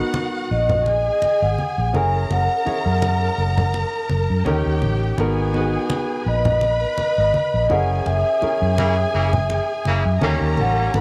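Swung sixteenths in 4/4 drive this smooth, cinematic 1970s-style soul excerpt, where thick-skinned, low-tuned congas and a round, punchy, foam-muted bass sitting up front support a mellow soft-mallet vibraphone melody with slow motor vibrato, an intimate baby grand piano with audible action noise, and dark, lush bowed symphonic strings, while a distant, loose horn section with tape echo adds stabs from 8.8 seconds during a band accent, set in a moderate echo-chamber studio ambience.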